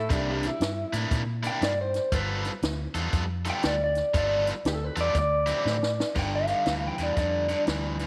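A small room's light reverb frames this laid-back, rollicking electric blues shuffle in G mixolydian at 119 BPM, a short slice of a longer piece with a 64% swing on the eighths. Up front, a slightly broken-up guitar through a small old amp with spring reverb plays a clean solo from the start until 6.2 seconds, over a bright, overdriven riff from a cranked stack guitar, a round, foam-muted vintage bass, and a compact cocktail kit with dark cymbals, a high-tuned snare and punchy kick. Chords move through C9, G9 and D9, and a drum fill at 5.7 seconds leads into a new section landing on G5.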